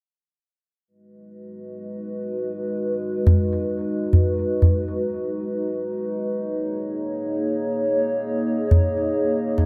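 Earthy and meditative, this excerpt of organic downtempo at 88 BPM in G# minor opens at 0.9 s with a warbly, detuned, nostalgic tape-like pad sustaining dark chorused chords that move from G#m7 to D#7sus4, joined at 3.3 s by a small, saturated, up-front udu, all set in an echo-heavy chamber reverb.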